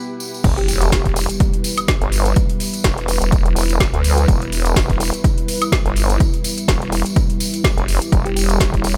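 Set in a digital ambience, this bouncy, aggressive bass house excerpt opens on a moody, detuned sawtooth pad and a jingly, distant tambourine, then drops at 0.4 s into a nasal, formant-filtered wobble bass and a punchy, overdriven kick up front. A garage kit with a woody snare and metallic hats enters with them, the pad pumps underneath, a very quiet electronic impact sounds until 2.4 s, and a round, tine-like thumb-piano pluck with dub echo sits in the background.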